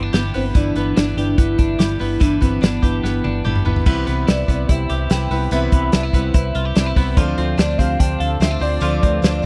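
Picked steel-string acoustic guitar, a clean, compressed twelve-string electric playing arpeggios through tape echo, and a dark, round, foam-muted bass open this bright, youthful stretch of jangly indie pop, joined at once by a loose, up-front drum kit with a fat snare and a velvety synth lead carrying the melody through chorus. After a drum fill, a woody upright piano with audible action noise slips into the background at 3.9 seconds, and a lush, warbling pad adds very quiet sustained chords from 7.2 seconds. The sound is dry and close, in the manner of a 1970s studio recording.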